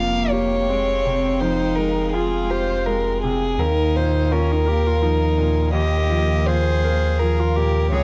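This short passage from a longer neoclassical piece opens with violin, cello, grand piano, chamber strings and sub bass sounding together at 83 BPM in a rubato 3/4, setting a fragile, reflective mood. A single violin carries the melody up front with an airy, intimate sul tasto tone, light vibrato and a soft attack. Beneath it, one cello plays a second line, pure and nasal, with a floating quality. A brilliant, natural-sounding grand piano provides the accompaniment, while a chamber string section holds sustained chords in the background with a warm glow. A deep, punchy sub bass with a pitch-drop attack and a mellow sine body also sits up front, as the harmony moves from Fmadd9 to Ebsus2 at 3.6 seconds in a dry, close 1970s-style studio sound.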